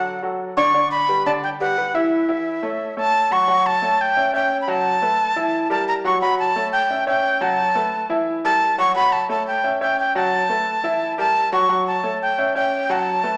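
A breathy, bright jazz flute and a clear concert grand piano start together at once in this joyful, danceable Latin excerpt, cut from a longer piece and moving at a brisk 175 BPM in a straight 4/4. The flute carries the melody high in its register, sitting up front with a metallic, reedy tone, crisp attack, audible chiff and vibrato. The piano accompanies from the deep bass up into the middle range, present and up front, its short sustain and slightly worn character giving the comping a lively edge. The harmony opens on Dmaj7, G and A before shifting at 3.5 seconds into a darker cycle built around F#m, B5 and a tense A13b9/E that repeats through to the close at 13.4 seconds. Both instruments sit in a wet recital-hall reverb, as if captured in a church or concert hall, though heard through a small speaker.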